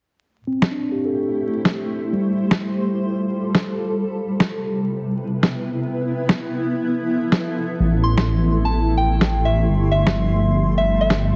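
A swung 127 BPM future garage groove in A minor, carried by a muffled, pitched-down electronic snare, sets a melancholic, wistful tone as a blurred granular cloud pad holds sustained chords and a mellow tine electric piano, filtered and echoed with analog delay, moves through a filter sweep across Am7, G9sus4, Cmaj7 and Fmaj7. The electric piano drops out at 6.1 seconds, and at 7.8 seconds a dark, rumbling detuned saw bass comes in up front. At 8.0 seconds a soft, warbling FM synth bell with chorus and delay adds a gentle melody, before the electric piano returns at 10.2 seconds. The whole short cut sits in a wet hall ambience with a heavily compressed, radio-like sound and vinyl crackle.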